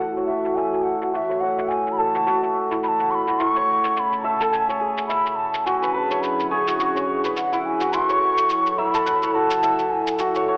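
Hypnotic and meditative, this short organic downtempo excerpt at 106 BPM in F# minor sets a mellow, bamboo-toned bansuri melody with tape echo over shimmering, hammered santur arpeggios sitting up front, a soft, detuned pad of breathy sustained chords, and a gritty, compressed cabasa, all heard through an echo chamber with a telephone-like tone as filter sweeps run across the santur, drums and pad and the harmony moves from F#m7 through Amaj7 and E13 back to F#m7.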